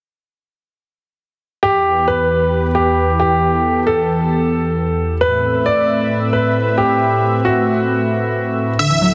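This emotional, euphoric trance fragment in E minor runs at 134 BPM in a straight 4/4. It opens at 1.6 s with a warm concert grand piano carrying a second line between F#4 and D5, its notes trailing a dub echo. Alongside it, a thick, warbling unison pad with a vintage sawtooth character holds sustained chords from D2 to F#5, treated with chorus and set up front. The harmony moves from Em to Amadd9 at 5.2 s, and the piano stops at 8.7 s. At 8.8 s a huge, airy, detuned supersaw lead strikes a bright E5, joined by a punchy, wave-folded unison pluck playing arpeggios from D3 to F#3 with a moving notch. A hall reverb lends a lush, wet space, and the dense, heavily limited modern master keeps the sound full until the piece is cut off at 9.1 s, taken from a longer track.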